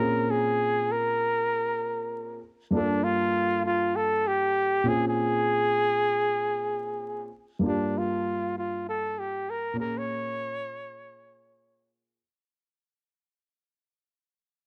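A breathy flugelhorn carries the melody from the opening moment over a dark concert grand piano, setting a nocturnal, cool hip hop mood at 98 BPM in 4/4 with a swung sixteenth-note feel. The flugelhorn sits up front with a soft attack, gentle vibrato and a whispered, intimate jazz-style tone, its solo line ranging from D4 to Db5 above the piano. Beneath it, the piano offers mellow accompaniment with deep bass and short sustain, its smooth, vintage character also placed close. Both parts carry plate reverb within a moderate studio space, and vinyl crackle lends a worn patina to the sound. The harmony moves through Bbm9, Gm9 and back to Bbm9 before shifting to plainer Gm7 and Bbm7 chords in a second section at 7.6 seconds, where the sound fades out until the clip ends at 12.5 seconds, cut from a longer piece.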